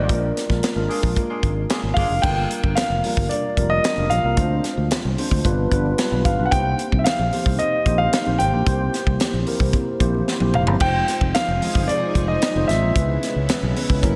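Lush hall reverb gives this glossy, breezy 1980s jazz-funk pop a big arena sound, as a dark, up-front grand piano carries the melody over chorused tine electric piano chords, a fingered electric bass and a tight funk kit with a high-tuned snare, while a mellow horn section with vibrato plays a brief second line until 2.1 s, very quiet distant congas enter at 2.2 s, and a vintage sawtooth string machine adds sustained background chords from 10.8 s after a drum fill.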